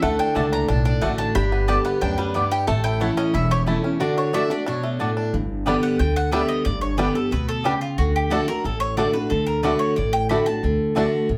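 Heard from further back in a small, reverberant room, this short cut from a longer bluegrass piece drives along at 181 BPM in a straight 4/4, in D major, with a driving, virtuosic mood. Up front, a picked steel-string dreadnought guitar with fresh strings carries the accompaniment, while a pizzicato upright bass on gut strings adds a thumpy, dark bottom. The melody is shared by a twangy, percussive banjo played with fingerpicks and a bright, picked mandolin, and a second mandolin with a warm, woody double-string tone adds stabs from 0.3 seconds. In the background, a lap resonator guitar played with slide and fingerpicks adds a mellow, nasal, metallic second line until 5.1 seconds. At 5.3 seconds the tune moves into a new section, with the chords shifting from D, G and A to a longer stretch on G before returning to D.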